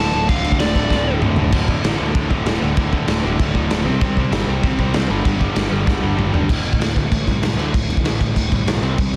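A bright, overdriven semi-hollow guitar opens this rowdy, rebellious punk rock fragment at 193 BPM with a brief high lead that ends at 1.2 seconds, over two picked rhythm guitars grinding out a low riff and a growly, punchy fuzz bass. Up front, a raw garage drum kit with a tight kick, a medium-tuned snare and a dark, rolled-off top pounds through crashes, toms and fills, moving over D5, C5 and G5 chords. The crunchy guitar drops out at 6.5 seconds, leaving the hollow-body rhythm guitar, bass and drums in a dense, dry and heavily limited mix.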